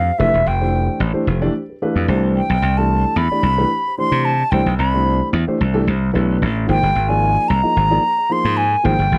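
Electric jazz fusion with a funky, slick mood at 111 BPM in a straight 4/4, heard as a short excerpt cut from a longer piece. A pure, straight-toned silver concert flute carries the melody up front with a slapback echo, over a bright, punchy slap bass and a dark, mellow grand piano whose action noise is audible and which adds a fill between 1.6 and 2.4 seconds. The chords move from Fmaj9 to Cmaj9 and then Abmaj9 in a dry, close 1970s-style studio sound.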